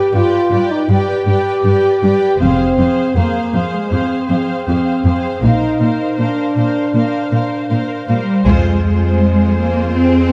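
Epic orchestral film score cut from a longer piece, dark and epic at a measured pace, with a mellow French horn section holding sustained chords up front over rich, bowed cellos and lush violas, while a warm, soft-attacked violin section sings a second line above. A clear, intense double bass section joins at 2.4 seconds to deepen the low end as the harmony moves through minor and open chords. At 8.5 seconds a focused studio violin melody enters with heavy, close and dry taiko drums and an accent from the full ensemble, all set in a dark production with a moderate scoring-stage reverb.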